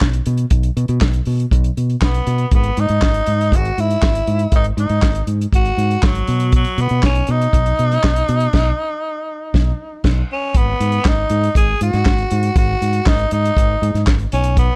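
Disco at 119 BPM in G# minor, with a glamorous, danceable strut in straight 4/4, cut from a longer piece. A dry, up-front soul drum kit drives it from the start, its punchy kick, medium-tuned snare, handclaps, hi-hat and dusky crash cymbal sitting under a rolled-off top. A fingered electric bass plays alongside, round and direct, holding the low register. At 2.0 seconds a growling tenor saxophone takes the solo melody, raspy and gritty yet clear, with vibrato and a smooth top in a pop style. The harmony moves from G#5 to B, the full band hits an accent at 8.5 seconds, and from 10.5 seconds the music shifts onto a G#7 chord. The production is dark and warm, with little reverb.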